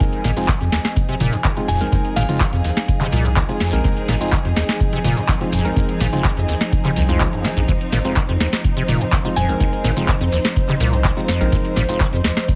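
A raw, trippy acid house drop in F minor at 125 BPM opens on an Fm7 with a deep electronic kick, a booming, up-front analog drum machine of tonal snare, handclaps, metallic hi-hats, shaker and toms, a round analog bass with tube saturation and sidechain pumping, a squelchy, resonant acid bass riff with filter sweeps, hollow percussive organ stabs with tape echo, and dark, bowed string chords with sidechain pumping, before a glassy FM synth bell with digital delay enters at 1.7 s, all in a lightly reverberant, heavily compressed radio sound.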